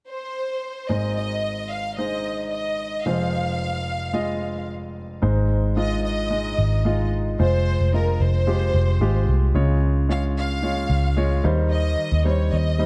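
Pop at 111 BPM in Ab major, this hopeful, uplifting fragment opens with a rich, focused studio violin section carrying the bowed melody with vibrato, joined at 0.9 seconds by a clear, polished baby grand piano up front in accompaniment. At 5.2 seconds a vintage muted picked electric bass enters with a round, amped, foam-muted tone, sitting prominently beneath the chords as they move from Ab and Fm toward Db and an Eb6. A large studio reverb and a dark overall production give the piece a spacious yet intimate feel.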